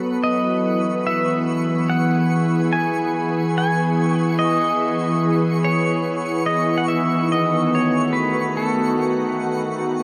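This reflective, serene ambient fragment, cut from a longer piece, opens with a soft, organ-like pad of pure, gently detuned sine tones holding sustained chords up front, thickened by ensemble chorus and its own reverb. Above it, a twinkling granular texture fades in from the first moment, adding a sparkling, octave-up FM shimmer that sits quietly behind the pad. At 0.2 seconds an electric pedal steel guitar enters with the melody, its clean, twangy tone played with fingerpicks and slide, compressed, shaped by volume swells and trailed by delay. The harmony rests on Emaj7 before moving to B7 at 6.9 seconds, in a straight, unhurried 4/4. A huge, wet ambient reverb with long decay surrounds the parts, and the whole recording carries a cassette tape character.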